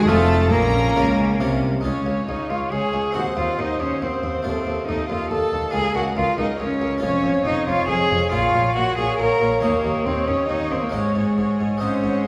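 Stormy and dramatic, this baroque-style concerto movement at 138 BPM in 3/4 moves from Bb minor toward Db major at 7.0 seconds, with a rich, up-front solo cello carrying the melody over a very quiet, lush symphonic violin section, a focused chamber violin second line, a bright, airy Italian-style harpsichord, distant chamber violas, and background chamber cellos with double basses supplying the bass, all set in the reverberant bloom of a concert hall.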